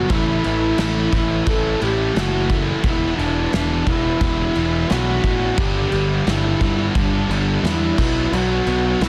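Quiet-loud alternative rock at 88 BPM in 4/4 with a straight feel, this dark, brooding excerpt sits in E dorian and moves through A, Em, G and Bm. A mellow duduk carries the melody as the solo voice, its soft attack, scooped notes and vibrato giving a folk-style tone with a smooth top. Beneath it, a fuzz-laden picked electric bass sits up front, punchy and overdriven, anchoring the low end. Three picked guitars fill the background: a bright overdriven electric, a hollow-bodied semi-hollow with a warm overdriven tone, and a tight, double-tracked distorted guitar reaching a little higher. A loose indie drum kit with a punchy kick, medium-tuned snare and dark crash cymbals breathes in a pumping studio room, its top rolled off. Light reverb and studio ambience surround a dense, heavily limited modern master.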